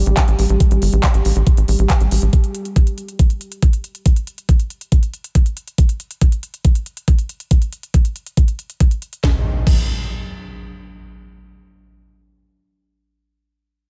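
Digital ambience frames this driving psychedelic trance excerpt, where a detuned, chorused, pulsing gated texture holds a Gsus2 chord under a filter sweep beside a punchy sawtooth sequencer bass until 2.3 seconds, while an up-front, tape-warm knocking electronic kick and an overdriven techno kit with cracking snare, smooth hats, handclaps and crash carry on past the arrival of an up-front electronic impact at 9.2 seconds.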